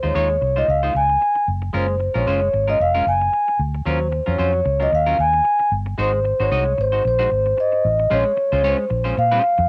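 Mellow, ringing vibraphone played with soft mallets carries the melody up front in this sultry, glamorous disco piece in Bb minor, moving at 113 BPM with a light sixteenth-note swing through lush chords from Dbmaj9 to Gbmaj9, Ebm9 and Ab7 before landing on Bbm9 at 8.1 seconds. Beneath it, a growly, punchy fingered electric bass with a foam-muted, amped tone sits prominently, while a bright, clean, picked semi-hollow electric guitar adds quieter accompaniment. The vibraphone and guitar carry a cassette-tape character, and the whole short cut from a longer piece has the light reverb and homespun feel of a home cassette recording.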